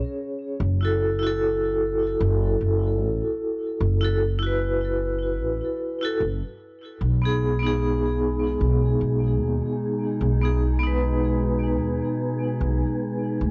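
A worn, warbling cassette sound with pitch drift and light small-room ambience wraps this dark, smoky trip hop passage, cut from a longer piece and moving at 75 BPM in 4/4 with a gentle swing on the sixteenths. A vibraphone struck with hard mallets opens at 0.0 seconds, up front and bright, its metallic ringing tone coloured by tremolo, gritty vintage 12-bit sampler texture and tape echo. At 0.6 seconds a pizzicato upright bass joins, woody and dark with steel strings, sitting close and low beneath the harmony as it moves from a rootless Bbm7 to Gbm7 and then to B6. At 7.9 seconds a nostalgic, lo-fi pad of square and triangle tones swells in with slow attack and long release, its chorus and reverb adding a hazy, warbly glow to the sustained chords. Alongside it, far in the background, a breathy, wind-like tuned noise layer adds a mellow, airy shimmer that carries through to the close.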